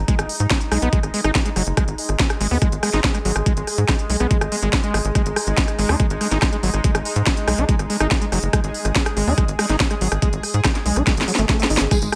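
Lightly reverberant digital ambience frames this driving, psychedelic trance excerpt at 142 BPM in G# minor, where a knocking, overdriven electronic kick drum and a techno drum kit with cracking snare and smooth hats sit up front beside a tight, punchy sawtooth sequencer bass, while a squelchy, gritty acid bass riff with distortion, cassette-tape colour and dub echo pumps against a mellow, pulsing gated texture of sustained chords under chorus, and after a drum fill at 11.1 seconds a thick, detuned unison lead with phaser and a jingly tambourine arrive at 11.9 seconds.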